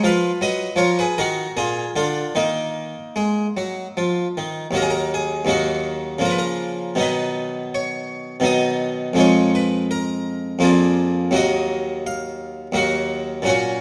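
A solo Flemish-style harpsichord opens this radiant, dance-like fragment of a baroque-style suite movement in Eb minor. It moves in a rubato 3/4 at roughly 72-86 BPM and is tuned to A4 = 444 Hz. The brilliant, plucked tone with its octave strings sits up front in a moderate recital hall reverb, spanning Eb2 to Gb5 as the harmony passes from B through Bb7 to Ebm before a second section begins at 4.8 s and returns to Ebm at 11.4 s.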